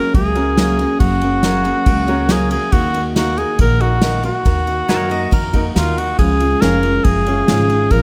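A mellow cor anglais sits up front with a light vibrato and a classical poise, carrying the melody across this short, dusty and heartbroken honky-tonk country excerpt. Beneath it, a bright, full-bodied steel-string acoustic guitar is picked while a brilliant, woody upright piano sits in the background, and a pizzicato upright bass with a growly, steel-strung tone anchors the low end. An acoustic drum kit played with bundle sticks keeps a straight feel on kick, snare and dark ride cymbal, sounding airy and polished in a small room. Briefly, from 4.9 to 5.6 seconds, a clean, compressed, twangy electric guitar slips in with a short second line. The harmony moves from Gbadd9 to Ebm and settles on Db, all wrapped in light reverb.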